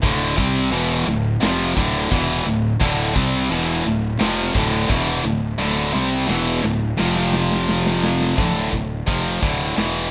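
Three picked, distorted electric guitars open this dark, aggressive heavy metal fragment together: a tight, up-front one carrying the riff, a double-tracked fuzz guitar in the background that drops out at 8.4 seconds, and a very quiet high-gain one, over a growly, overdriven fingered bass and a big-room acoustic drum kit with punchy kick, bright china and crash cymbals and a fill from 5.6 seconds, captured in a rough, dry home-demo mix.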